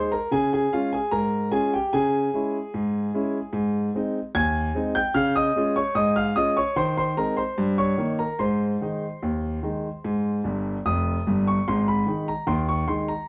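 Set in a straight, even 2/4, this lively, jaunty ragtime excerpt features a solo concert grand piano that sounds intimate and boxy, placed up front with deep bass, long sustain and audible action noise in a small, moderately reverberant room. The harmony moves from D-flat through a darkened D-flat minor, then resolves through A-flat and E-flat seventh chords back home. A piano fill arrives at 10.4 seconds before the opening strain begins again at 11.7 seconds, shortly before the clip is cut off.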